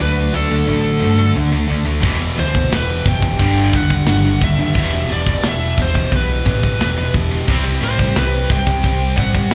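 Heard through a club PA with roomy reverb, this dark, aggressive heavy metal fragment in E minor moves at 88 BPM, as a bright, high-gain lead guitar with slapback and tape echo sings its melody over three background riff guitars, a growly, punchy overdriven bass and a very quiet, woody string section holding lush sustained chords, while a tight, up-front drum kit crashes in at 2.0 seconds beneath chords shifting from D through Em, G and C.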